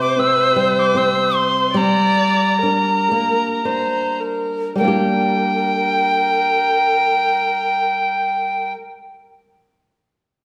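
An airy tin whistle carries the melody of this mournful Celtic slow air in G dorian, its crisp, chiffy attack and vibrato heard close and up front, while a dark, bowed viola played by one player traces an expressive second line with soft attacks and portamento. Fingerpicked flamenco guitar, warm with audible finger squeak, accompanies from C5 to Gm in a rubato 3/4 at 51-80 BPM, slowing through the opening 4.8 seconds before the music moves into a new section. The longing passage, tuned to A4 = 437 Hz and cut from a longer piece, sits in the lingering 1.5-second reverb of a church or concert hall.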